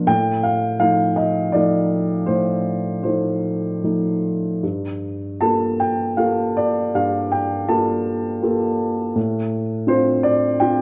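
A dark upright piano carries this brief classical fragment alone, its woody, mellow tone placed up front with a long sustain that lets each chord linger. The mood is warm and tender, set in 3/4 at 79 BPM, though the beats fall unevenly and the pulse bends freely with rubato. Across roughly 10.8 seconds, the harmony moves from F7 over A to a Gm9 at 4.6 seconds and settles on Dm7 over A at 9.2 seconds. The playing spans a range from G2 up to A5, and the instrument is tuned slightly high, to A4 = 445 Hz. A moderate recital hall reverb surrounds the sound, and the overall production is dark and warm, giving this excerpt from a longer piece an enveloping glow.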